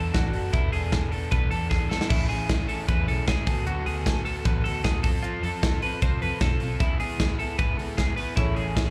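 Jangly indie pop with a breezy, bright mood, this short cut from a longer piece rides a straight 4/4 groove driven by an up-front modern drum kit with a punchy kick and medium-tuned snare, which enters at 0.1 seconds and throws in a fill at 1.7 seconds. A compressed, twangy twelve-string electric guitar spins arpeggios through tape and slapback echo over a crunchy overdriven guitar with its own slapback, while a dark, foam-muted fingered bass anchors the low end. A woody upright piano sits in the background, heard only at the opening and again from 8.4 seconds, as the chords move from E7sus4 through Amaj7, D6, F and C#m7, all captured like a live club gig through the venue's PA.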